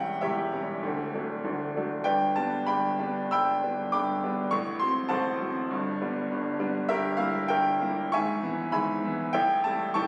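Brooding and stormy, this short passage from a romantic character piece for solo piano moves at 99 BPM in 4/4, its beats uneven and pulled about with rubato. A bright upright piano plays alone for the full 10.1 seconds, ranging from a deep D1 up to E6, with a brilliant, woody tone that sits up front. The harmony moves through diminished chords, opening on C#dim/E before passing through D, G and F#dim/A, then G, Edim/G and E/G#, and settling on A7 at 9.3 seconds. The instrument is tuned to A4 = 442 Hz and has a natural sound. Captured on a phone in a recital hall, the playing carries a moderate reverb of 1.5 seconds, and the fragment is cut from a longer piece.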